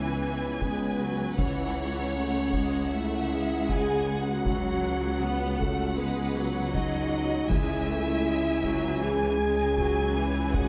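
The sound is spacious and lush, set in a moderate scoring-stage reverb that gives this short cut from a longer piece a dark, dramatic cinematic weight. At a steady 79 BPM in C# minor, a warm, expressive violin section carries the melody with vibrato and a soft attack, while a second violin section adds a rich, focused line beneath it. A close, studio-sounding viola section fills the middle with bowed accompaniment, and a mellow French horn section holds sustained chords in the background. The low end rests on a bass anchored together by a mellow tuba, a smooth, even double bass section and a background cello section. A taiko ensemble struck with heavy sticks enters at 0.6 seconds, and very quiet timpani with soft mallets sound at 1.4 and 7.5 seconds as the harmony moves from E over C# to C# minor with an added eleventh and back to plain C# minor.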